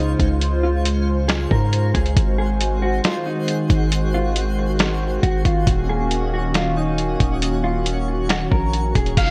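A half-time hip hop groove from a muffled, pitched-down sampler-style kit, with a thumpy kick and snare, joins at 0.2 s under a long, deep 808 bass in this floating, dreamy slice of atmospheric cloud-rap. A hollow, flute-like pad holds sustained chords through Dbmaj7, Ab7 and Ebm7, while a dark, clean electric guitar carries the melody through lush chorus, delay and a low-pass filter, and a faint granular texture twinkles with an octave-up shimmer. At 9.2 s a bright, ringing concert harp arpeggio arrives as the fragment ends, all set in light digital ambience with a bright 1980s-style sheen.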